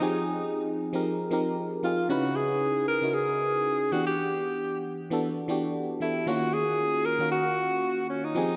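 This amapiano excerpt has a hypnotic, soulful mood at 115 BPM in 4/4 with a gentle 16th-note swing, moving through Fm7, Dbm7, Em7 and Ebm7. A breathy alto saxophone carries the melody up front with light vibrato, a smooth top and a diffuse ambient delay, while a glassy, bell-like FM electric piano with a fast, decaying attack and chorus plays the accompaniment beside it. A lush hall reverb soaks the dreamy mix, and the highs are rolled off above 10.7 kHz.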